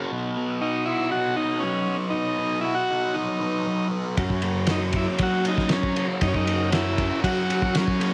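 Hypnotic and trippy, this psychedelic rock excerpt moves at 118 BPM in a straight 4/4, centred on B major. A thick, double-tracked fuzz guitar opens with a distorted, picked riff soaked in phaser, sitting up front while a reedy, breathing pedal harmonium holds sustained chords in the background. At 0.6 seconds a vintage, buzzy combo organ enters with an overdriven melody carried on slapback echo, the chords moving from B to F#. At 4.2 seconds a punchy fuzz bass, fingered and overdriven, joins alongside a cloth-damped drum kit whose muffled, gritty sound brings dark cymbals, a fat snare and a tight kick. The whole excerpt sits in light reverb and small room ambience.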